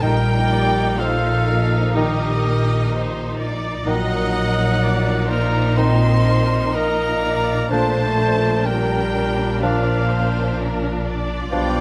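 Classical and lyrical, this slow romantic orchestral fragment moves with a rubato sway as a distant, dark violin section carries the melody over lush bowed strings, with a present cor anglais, airy flute, roomy clarinet, mellow bassoon, focused chamber violins, soft-attack French horns, thumb-plucked ringing harp, woody double basses, smooth cellos and violas, and barely audible timpani entering at 0.0 and again at 7.7 seconds, all within a moderate recital hall reverb.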